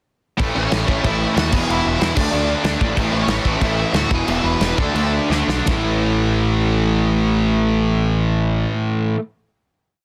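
A growly, fuzz-laden electric bass sits up front in this rowdy, rebellious punk rock piece, driving eighth notes in A major at 160-188 BPM in a straight 4/4. Behind it, two bright guitars, one overdriven and one distorted, pound out eighth-note power chords, while a very quiet, double-tracked overdriven guitar adds compressed, ringing chords. A loose indie drum kit, with a punchy kick, medium-tuned snare and dark crash and ride cymbals, plays a fast punk groove in a small room. From 0.6 s, a high-gain lead guitar with digital delay carries a hook-based motif, partly doubled in octaves. The chorus moves through A, E and D5 twice, slows from 3.0 s, and ends in a drum fill before the drums stop at 5.8 s, leaving the band to hold a final A5 chord as the bass drops out just ahead of the guitars. The dense, heavily limited modern master keeps the sound dry.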